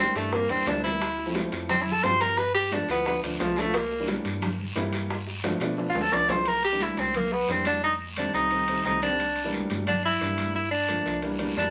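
This Afro-Cuban jazz excerpt moves at a lively, sophisticated 176 BPM in a straight 4/4, centered on C mixolydian, with chords such as C9, Dm7, G9, F9 and Gm7. A tenor saxophone carries a soloing melody up front throughout, its warm, roomy jazz tone shaded with light vibrato and scooped notes. Beneath it, a dark, mellow concert grand piano with a vintage character and short sustain supplies the accompaniment, while a metallic, digital FM bass with a fast attack and decaying notes holds the low end. In the background, bright, high-tuned congas, round, low-tuned bongos and ringing metal-shelled timbales fill out the percussion alongside a raspy guiro heard close and dry, with the bongos dropping out at 6.4 seconds. A drum fill leads into the repeat of the opening section at 6.5 seconds, and another arrives at 11.4 seconds, all within a wet studio ambience.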